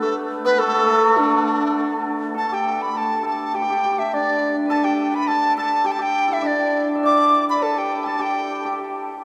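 A reedy, buzzing large dizi carries the melody up front with vibrato and a crisp attack in this graceful, festive excerpt of Chinese traditional chamber music in D zhi mode, moving at a rubato 103 BPM in 2/4, while a bright, shimmering hammered dulcimer rings beside it as a second line and a very quiet, mellow, distant xiao adds a tongued second line at the opening and returns at 7.0 s, all bathed in the long, wet reverb of a cathedral-like hall.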